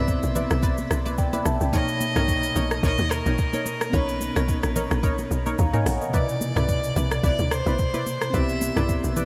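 A swung 4/4 groove at 109 BPM drives this warm, soulful amapiano excerpt, built on a tight, punchy log drum bass with a fast attack, a smooth electronic R&B kit with a soft kick and metallic hats, and bright, damped congas sitting in the background from 0.4 s. A mellow tine electric piano and sawtooth chord stabs with chorus and a moving notch carry the Cmaj9 to Bmaj9 harmony, while a clear, earthy fiddle with light vibrato sounds distant through a diffuse ambient delay. The whole mix is soaked in a huge, dreamy reverb.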